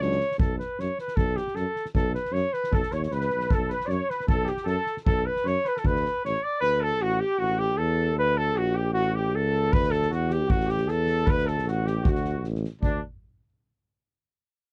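A warm, lightly vibrato flugelhorn carries the melody up front in this wild, exuberant Balkan brass band fragment, moving at 154 BPM in a straight 2/4 in D major, with a soft-attack tuba holding down the bass in a classical style. A mellow, smooth-topped trumpet joins on a second line in the background at 2.7 seconds, while a soft-mallet drum kit with a fat snare and boomy kick drops out at 6.3 seconds and returns at 9.7 seconds. The dry, close studio sound has a 1970s character, with the flugelhorn itself sounding distant and roomy and the harmony briefly colored by a Bbmaj7#5 chord before settling back toward D.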